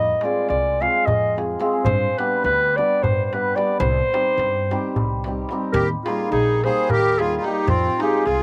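Bittersweet and virtuosic, this Balkan wedding-band excerpt in a brisk 7/8 at 216 eighth-note beats per minute puts a mellow, vintage clarinet up front in a classical-style solo over woody pizzicato upright bass, a shimmering, ringing hammered dulcimer with slapback echo and a crisp, metal-shelled darbuka played with soft hands, while a reedy, sweet accordion with light tremolo tuning joins up front as a second line at 5.7 seconds, in a dry outdoor recording over chords moving from Fm through G, Cm and Eb back to Fm.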